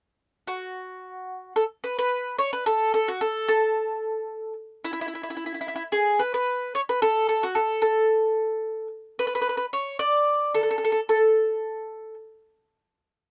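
A dry, close 1970s-style studio sound with light reverb frames this carefree, sunny calypso fragment at 110 BPM in 4/4 with a gentle sixteenth-note swing, where a single up-front acoustic mandolin plays solo from 0.5 to 12.1 seconds, its picked double strings ringing woody and warm between E4 and D5.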